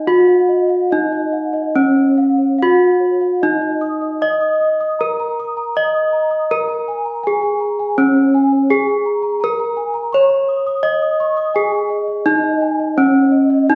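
Gamelan music in a shimmering, serene mood, heard as an excerpt from a longer piece, with two bronze metallophones sounding through a reverberant recital hall. The lower metallophone carries the melody up front, its wooden mallet drawing a ringing, band-limited, vintage tone. Above it, a second metallophone struck with padded disc mallets plays softer, mellow arpeggios, its paired tuning producing airy, shimmering beats, and the music moves into a new section at 8.0 seconds.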